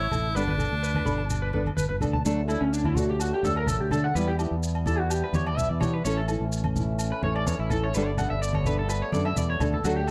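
A straight 4/4 groove at 126 BPM in D major carries this carefree highlife guitar band excerpt, with grainy maracas, plus thick-skinned, low-tuned congas and ringing agogo bells in the background, beneath an up-front fingered electric bass. An edgy, punchy tenor saxophone with vibrato opens the melody and stops at 1.8 s, while a twangy, slightly broken-up electric guitar with lush chorus and slapback echo plays arpeggios up front, beside a fingerpicked steel-string acoustic guitar whose finger squeaks are audible. At 2.2 s a reedy, breathing, vintage harmonium adds sustained chords, and from 2.3 s the electric guitar takes a clean solo over D, Em, A and Gadd9 in a dry, close, small-room 1970s-style sound.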